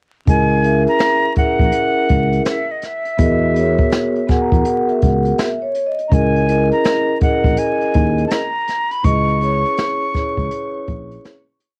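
Heard through a home cassette recording with vinyl crackle and light reverb, this short, smoky and cool jazz-hop piece in C# dorian sits at 82 BPM with a swung sixteenth-note feel. A brushed acoustic kit with a boomy kick and vintage sampler grit lays down a laid-back beat with sixteenth-note hats, while a fretless electric bass with subtle chorus plays a syncopated line and a mellow, ringing vibraphone pushes rootless chords, adding a fill from 3.9 to 6.1 seconds. Up front, a breathy, bright concert flute with a straight, slightly unsteady tone plays tongued, motif-based phrases as the chords move from C#m6 to C#m7, before a fade-out that begins at 9.0 seconds.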